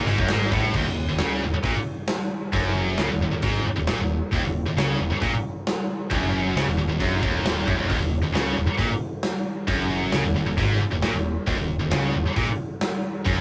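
Hard rock at 134 BPM in a straight 4/4, anthemic and energetic, cut from a longer piece and tuned slightly flat to A4 = 438 Hz, with two distorted high-gain guitars riffing low from the start and settling on an Eb5 power chord at 0.7 seconds. The scooped guitar sits up front with a bright edge beside the heavier one, while an overdriven electric bass growls dark and round in the background, and a big acoustic kit enters at 0.1 seconds with a punchy kick, medium-tuned snare, hi-hat and crash placed mid-forward and up front. The sound is a rough rehearsal-room capture with tube saturation and a moderate, short booth ambience.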